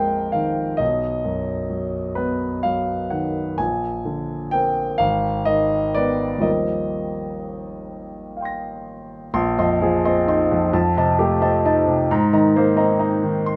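A clear, polished grand piano sits up front in light reverb, playing serene, hazy impressionist classical music in a slow, rubato 6/8 at 43 BPM, spanning Ab1 to Bb6 through lush extended harmonies such as Bb9sus4, Abm and Eb69 before shifting at 9.3 s into a new passage of Bb11, F9 and Abadd9 chords, in this brief 13.6-second excerpt cut from a longer piece.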